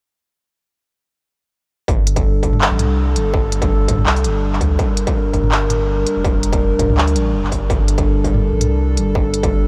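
Light reverb frames this short, spacious and heavy half-time drum and bass cut, with the drums carrying the character of a small room. At 1.9 seconds the drop arrives on a G minor chord, and every part enters together. A dark analog pad holds sustained chords, its detuned square, sawtooth and triangle layers with a sub octave giving a moody, up-front tone, shaped by chorus, a moving notch, a slow attack, a long release and sidechain pumping. Beneath it, a saturated sub bass built on a sine adds a deep, thick, sustained low end with a fast attack. A distorted electronic kick anchors the drums, joined by an industrial kit of handclaps, smooth hi-hats and toms, with a lightly swung sixteenth-note feel. The drums stop at 9.5 seconds, while the pad and bass carry on to 9.7 seconds.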